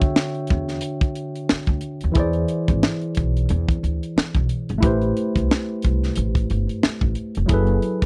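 This R&B and neo-soul excerpt moves at 90 BPM in 4/4 with a 59% swing on the 16ths, setting a smooth, late-night mood. A worn, barky tine electric piano plays the accompaniment through a combo amp, clean in tone yet slightly out of tune, spanning D3 to G5 across the chords Dmaj9, E7b13, Am7 and F#m11. Beneath it, a pizzicato upright bass with steel strings sounds woody and dark, sitting between F1 and E2. A tight funk drum kit drives the groove with hi-hat, a high-tuned snare and a tight kick, its small-room, mid-forward sound placed up front and a touch louder than the other parts. The three instruments play together from 0.0 to 8.1 seconds in a dry, close 1970s-style studio sound tuned to A4 = 439 Hz, a short cut from a longer piece.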